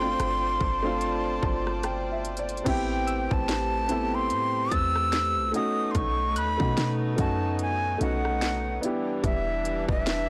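Longing and moody, this contemporary R&B excerpt pairs a swung, unhurried trap groove with a breathy, bright jazz flute carrying the melody up front, its reedy tone marked by chiff and vibrato. A baby grand piano accompanies with an intimate, natural sound where the action noise is audible, and it adds a fill beginning at 1.0 seconds. Behind them a chamber string section holds earthy, bowed sustained chords with a smooth top, while a clean, sine-like 808-style bass booms deep and mellow underneath. The electronic trap kit sits forward with a hard-clipped kick, sharp snare, crisp hats, rim clicks and a crash, while a very quiet, dark pluck with chorus flickers in the upper register from 1.4 to 7.7 seconds. The harmony moves from G7sus4 through Am7 and B7 to Em7, and the dry, blown-out, overdriven recording gives the whole a saturated edge.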